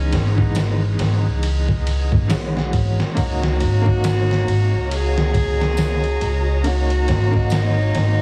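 Heavily compressed with a dry, radio-like sound, this hypnotic, cinematic trip hop excerpt at 69 BPM, swung on the sixteenths and tuned to A4 = 435 Hz, moves from C#m9 to D#m7 as a warm, soft-attack cello bowed sul tasto sings a floating melody with tape echo over a clear, woody upright piano carrying tremolo, 12-bit sampler grit and tape echo, a bright, growly pizzicato upright bass up front, a gritty, pitched-down sampler drum kit with a thumpy kick, a tambourine in the background, and a lush, very quiet string section entering at 3.2 s.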